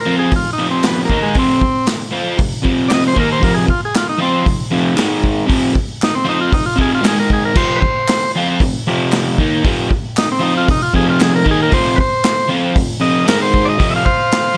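A buzzy, overdriven transistor combo organ takes the lead from the opening second, soloing up front across the whole 14.6-second fragment of this swaggering, menacing garage rock cut in F minor at 116 BPM. A crunchy, double-tracked electric guitar drives a picked riff over chords shifting between F5 and Ab5, while a vintage acoustic kit with a punchy kick, medium-tuned snare and dark cymbals pumps in a small room, joined from 0.8 seconds by very quiet, hollow group handclaps. Light reverb gives the mix a close, small-room feel.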